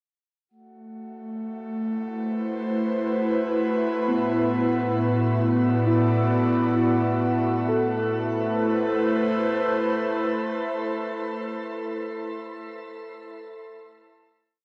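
Ambient piece in A dorian at 50 BPM in 3/4, reflective and serene, moving slowly from Am to Bm7/A at 4.1 seconds and settling back on a held Am chord at 7.7 seconds. Up front, an airy, breathy pad with chorus holds slowly shifting chords from 0.5 seconds, its detuned sawtooth and triangle tones softened by a noise layer, slow attack and long release. Beneath it, an overtone-sweeping drone with chorus and its own reverb sustains a resonant tone with moving overtones, while a glass harmonica sits in the background with a pure, ethereal held high note that beats. Muted, felt-like synth keys with chorus and tape echo enter at 4.1 seconds, playing one slow, intimate arpeggio loop of decaying notes through to the close. A lush shimmer reverb with a seven-second tail and a dark production envelop the whole piece.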